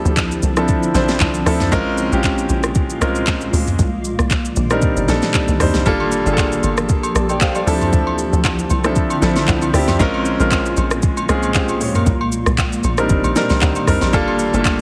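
Late-night and hypnotic, this amapiano excerpt in G minor moves at 116 BPM with a light 16th-note swing, as a clear, polished baby grand piano sits up front over a blurred, evolving granular cloud pad with sidechain pumping, a tight, punchy log drum bass, and a tape-warm, smooth R&B drum kit with soft kick, fat snare and smooth hats, while agogo bells and woodblock join in the background at 6.0 s, all cycling through Dm9, Bbm9, Cm9 and Gm9 in a heavily compressed, radio-like mix with light digital ambience.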